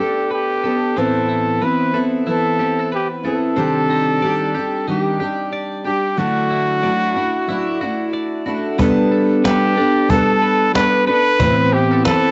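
Acoustic pop at 92 BPM in G major, heartfelt and sunny, with a gentle 16th-note swing: a breathy, whispered trumpet carries an intimate melody with light vibrato up front, over a full-bodied fingerpicked dreadnought guitar that is double-tracked. A clean, bright, twangy twelve-string electric guitar spins compressed arpeggios in the background, while chords of Gadd9, Amadd9, Cmadd9 and Dadd9 drift by. At 8.8 s a snappy cajon with snares joins under soft hands, and every part carries the soft, dulled sheen of a home cassette recording in a moderate studio reverb, in this short cut from a longer piece.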